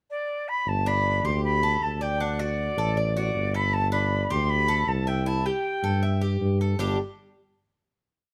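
Cuban son in a guajira vein, relaxed and danceable, this short piece opens with an airy jazz flute with a crisp, chiffy attack in a pickup bar before a mellow tuba enters at 0.7 seconds with a punchy tumbao bass that anticipates the chords. A bright, metallic Cuban tres picks an arpeggiated guajeo on double strings through the montuno vamp while the flute plays expressive hook phrases with vibrato, until the piece settles on a final chord at 6.8 seconds. Light reverb and a dark production frame the sound.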